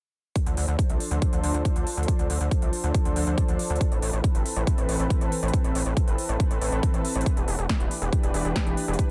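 A digital ambience surrounds this short cut from a longer uplifting trance piece, which runs at 139 BPM in a straight 4/4 in D dorian, tuned to A4 = 441 Hz. The mood is euphoric and driving from the moment the drums arrive at 0.4 seconds. The electronic kick is punchy, layered, overdriven and up front. Alongside it, a layered big-room dance kit adds a punchy snare and crisp hi-hats with overdrive of their own, and this kit is heard as if re-recorded in a large room. The gritty, aggressive synth bass enters at 0.5 seconds and sits in the D1 to D2 range, nasal and sawtooth-edged with oscillator sync, a sine layer, a fast attack, a decaying tail and a filter sweep. Distortion and sidechain pumping shape this up-front bass until it stops at 9.0 seconds, just before the drums close out.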